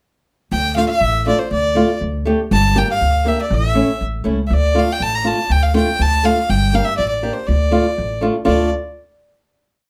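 A nasal, clear violin carries a modal klezmer melody with ornaments, light vibrato and an airy bow, giving this short, festive and soulful piece in 2/4 its earthy voice. A pizzicato upright bass with woody gut strings plays a thumpy quarter-note figure from the start, and a fingerpicked flamenco guitar with fresh strings enters at 0.8 s with off-beat triad chords. The trio sits in a small, wet room and comes to rest on a final chord at 8.5 s.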